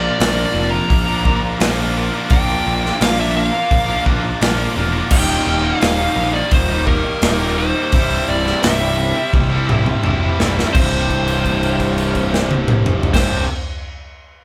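Anthemic and bittersweet, this short cut of quiet-loud alternative rock moves at a steady, straight four. A dark, fuzz-soaked lead guitar carries the melody in its upper register. Beneath it, a tight guitar with a bright, distorted edge and a compressed second guitar tucked into the background drive the riff together. A picked electric bass adds a warm, overdriven low end, while an airy, polished acoustic kit sits up front with punchy kick, bright cymbals and a medium-tuned snare. Far beneath the band, a very quiet chamber string section holds rich, bowed chords with vibrato. A drum fill at 9.3 seconds leads into a new section at 10.7 seconds, where a held note rings out, all captured as a band playing live in one room with light reverb.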